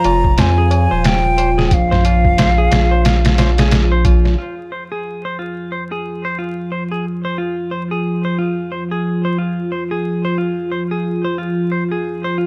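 A hollow, vibrato-laced silver concert flute carries the melody of this smoky, brooding trip hop excerpt in F minor at 90 BPM with a swung sixteenth feel, trailing tape echo until 3.7 seconds over a round sine sub bass, a compressed, pitched-down sampler drum kit with a thumpy kick and studio reverb, and faint, dry, high-tuned tabla, which drop out at 4.4 seconds, leaving a detuned, chorused sawtooth analog pad under a filter sweep and clean picked electric guitar arpeggios roughened by 12-bit sampler grit, low-pass filtering and tape echo to sustain through 12.5 seconds amid a layer of vinyl crackle.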